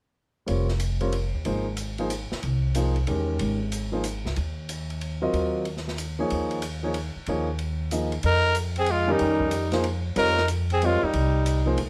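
Modal jazz in F minor, this cool, spiritual excerpt swings at 186 BPM in 3/4, opening with an up-front, natural-sounding concert grand piano with deep bass, a woody pizzicato upright bass, and an airy small-room drum kit with dark cymbals and a boomy kick, as the harmony moves from Fm11 to Eb9sus4. At 8.2 s the chord shifts to F9sus4 and a warm tenor saxophone enters as a second line with vibrato, scooped notes and a soft attack, joined at 8.3 s by a forceful, punchy, close-miked trumpet carrying the melody up front. Light reverb gives the ensemble a gentle sense of space.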